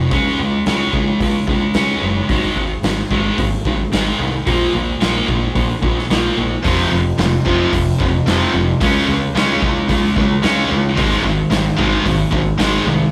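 This rough rehearsal-room recording carries tube saturation and a moderate studio reverb, giving a brooding, dark fragment of quiet-loud alternative rock in a straight 4/4. Up front, a scooped, high-gain distorted guitar drives a bright, picked riff, and at 6.6 seconds a second scooped, distorted guitar joins, also playing a riff. Underneath, a very quiet electric guitar through a small old amp plays twangy, slightly broken-up arpeggios with a compressed, lo-fi tone. A growling picked electric bass, overdriven and heard both direct and amped, holds the low end. The raw garage drum kit of kick, snare and hi-hat sits in a bright stone room that pumps, with a punchy kick, a medium-tuned snare and a gritty, rolled-off top. The harmony moves through Db5, Ab5, Bb5, F5, Dbm and back to Ab5 before the passage cuts off.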